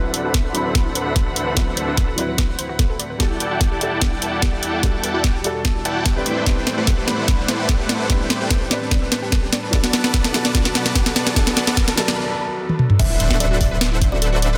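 A half-time 4/4 pulse at 147 BPM drives this bittersweet, lush future bass excerpt, with a knocking electronic kick and a trap kit of sharp snare, bright hats, crash and toms sitting up front with a tape-warm, produced edge. Over chords moving from D13 through Em11, Am11 and Bm7, a soft, felt-muted upright piano with audible action noise plays intimate accompaniment through tape echo. Dark, bowed chamber strings hold smooth sustained chords in the background, while a punchy, full-bodied unison pluck spins arpeggios in the background as well. A huge, thick, airy supersaw riff carries the build-up under a low-pass filter sweep, with drum fills running through the build-up and a very quiet riser arriving from 9.0 seconds. At the drop at 13.0 seconds, an impact lands, a deep, sine-toned 808-style bass on D1 enters, and a woody, hollow kalimba plays a brief melody with tape echo. Sidechain pumping breathes through the piano, strings, pluck, supersaw, kalimba and bass, all set in light reverb and digital ambience within a dense, heavily limited modern master.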